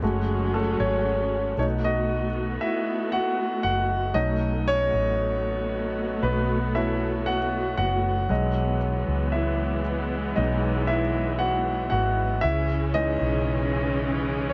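Longing and melancholic, this slow pop piece at 58 BPM, cut from a longer work, centres on an intimate concert grand piano that plays solo figures throughout its 14.5 seconds with audible action noise and long sustain, while a lush bowed string section holds sustained chords with vibrato and portamento and a woody, round fretless electric bass treated with ensemble chorus anchors the low end, all moving from F#madd9 through B7 and Emaj7/B to C#m in light studio reverb.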